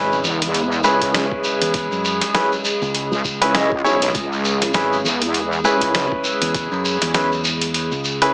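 A warbling, nostalgic tape-like pad, a clear, polished grand piano playing stabs and a fingered electric bass open this playful, swaggering glitch hop excerpt with a swung sixteenth-note feel, soon joined by a grainy, distant shekere, a heavy, detuned wobble bass that stops at 6.1 s, a gritty, pitched-down boom bap kit of hi-hat and medium-tuned snare, and a thumpy electronic kick in the background; the piano carries 12-bit sampler grit and dub echo, the pad and piano both pump to the sidechain, and the mix has a heavily compressed, small-speaker radio sound with a moderate plate reverb.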